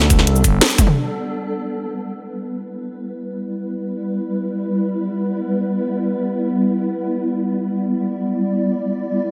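Dark and tense, this excerpt of technical drum and bass floats in free time, opening with a burst of full-band energy before thinning out to a single sustained texture. A swarming drone of detuned, granular unison tones holds sustained chords throughout, its slow attack and long release giving it an evolving, uneasy presence up front, colored by its own built-in reverb and sidechain pumping. In the first moments a growling FM bass, thick and fast in attack, sits up front alongside a layered electronic drum kit of hi-hat, shaker, toms and a cracking snare, joined at 0.1 seconds by a knocking electronic kick. The band hits an accent at 0.6 seconds and the drums play a fill at 0.8 seconds before the rhythm section falls away. From 1.0 seconds to 9.3 seconds the drone carries on alone under a filter sweep, suspended in a moderate, lush hall reverb with a 2.4-second tail.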